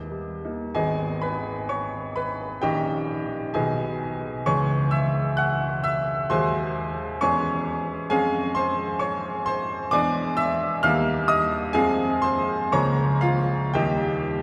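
Passionate and hopeful, this 14.4-second cut from a romantic classical character piece for solo piano unfolds with rubato at 65 BPM in 2/4, its bright, up-front baby grand spanning G#1 to F#6 with long sustain inside a wet cathedral reverb that rings for 4.8 seconds, while the harmony in G# minor, tuned to A4 = 445 Hz, moves through C#m and E7 before arriving at Fm and Eb.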